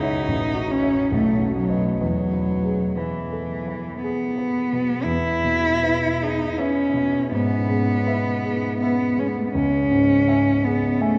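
Bathed in a wet cathedral reverb lasting 6.3 seconds, with its highs gently trimmed, this tender, lyrical romantic classical excerpt features a single bowed cello, focused, smooth-topped and sung with vibrato, carrying the melody up front over a polished, present grand piano accompaniment of short sustain, the pair moving through E major in a rubato 3/4 between 55 and 84 BPM from F#m7/A and B7 to E before a second passage begins at 5.0 s and turns through E/G# toward C#m.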